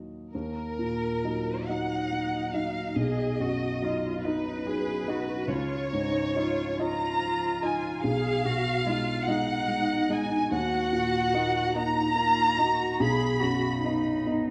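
Neoclassical piano and strings in Eb minor, reflective and melancholic, drifting in a rubato 6/8 at 48 BPM: a felt-muted upright piano, mellow and intimate up front, carries the accompaniment from the start, a veiled con sordino violin section sings the melody with vibrato from 0.3 s, and a single muted cello joins at 1.7 s with a dark second line marked by soft attacks and portamento, all set in a moderate concert hall reverb in this fragment cut from a longer piece.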